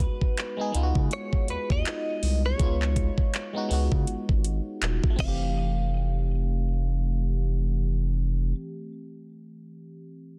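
Dreamy and romantic, this contemporary R&B fragment at 81 BPM with a swung sixteenth feel sets a clean, picked electric guitar melody treated with analog chorus and digital delay over a glassy, bell-like FM electric piano with chorus and phaser, a thick, saturated sine sub bass sitting up front, and a smooth electronic drum kit of knocking kick, metallic hi-hats, handclaps and crash carrying 12-bit sampler grit that drops out at 5.4 seconds, while guitar and bass stop at 8.5 seconds and the piano rings alone until 10.4 seconds, in a dry, dense, heavily limited mix over a Db9sus4 chord moving to Fmaj9.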